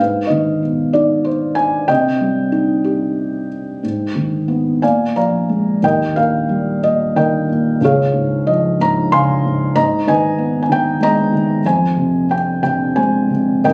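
Captured on a phone in a club-like room with light reverb and a faint mains hum, this short fragment of lyrical classical solo piano sounds reflective and wistful, moving in a rubato 6/8 at roughly 58-65 BPM. A felt-muted upright piano, up front and intimate, plays alone across a range from Db2 to C6, its thick felt giving a dark, mellow tone with audible action noise. Opening on Abm, Cm and Bb7, the harmony settles into Eb mixolydian at 5.8 s, passing through Eb, Db, Abm and Fm before the recording ends at 13.7 s.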